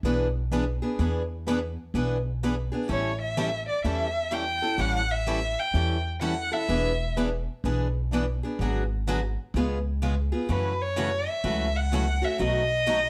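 Playful and swinging, this acoustic string swing piece moves at 126 BPM in E mixolydian, its chords running from E7 through A7 before turning toward F#m7 and B7. A bright, boxy steel-string guitar with finger squeak and a plugged-in swing guitar further back share the accompaniment over a woody, thumpy pizzicato upright bass on gut strings. The bowed violin carries an expressive melody with vibrato and portamento, entering at 2.9 s, pausing at 7.2 s and returning at 10.5 s, in a moderate studio reverb.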